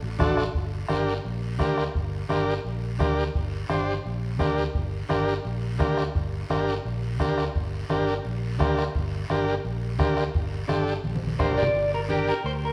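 A round, amped fingered electric bass opens this fiery, passionate cumbia excerpt, joined almost at once by a buzzy vintage combo organ with heavy vibrato up front, a soft-beater bombo, ringing low-tuned congas set back in the mix, and a raspy, saturated guiro. A drum fill arrives at 11.1 seconds, and at 11.4 seconds a twangy, slightly broken-up electric guitar steps forward with spring reverb to carry the melody. The band sits in a moderate recital hall reverb.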